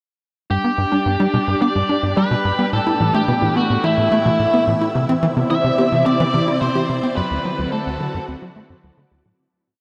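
A whole piece of ambient, sequencer-driven space music in G major at 108 BPM opens at 0.5 seconds with all four parts together in a vast, echoing space, the mood expansive and cosmic as chords move from G through Asus2 and Cmaj7 to D7. A tight, punchy sequencer bass drives a nasal, sawtooth seven-step loop that drifts against the bar, while a warbling, lo-fi pluck circles a three-step arpeggio in the background and a swirling, vintage string machine sustains slowly shifting chords through ensemble chorus and phaser. Up front, an overdriven lead guitar with tape echo plays biting, arch-shaped motifs until 8.2 seconds, as the piece fades out from 6.4 seconds.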